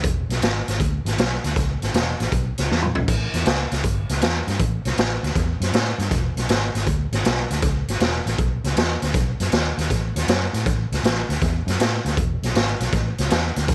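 Rollicking and swaggering, this excerpt from a longer electric blues shuffle swings at 158 BPM in E mixolydian, carried only by bass and drums from start to finish across its 13.7 seconds. The raw garage kit sits up front with a punchy kick, medium-tuned snare, hi-hat, toms and crash, its gritty, saturated small-room sound rolled off at the top, and it breaks into a fill at 2.7 seconds. Beneath it, a vintage foam-muted fingered electric bass plays dark and round through an amp, ranging from E1 to A2, in a dry mix with little reverb.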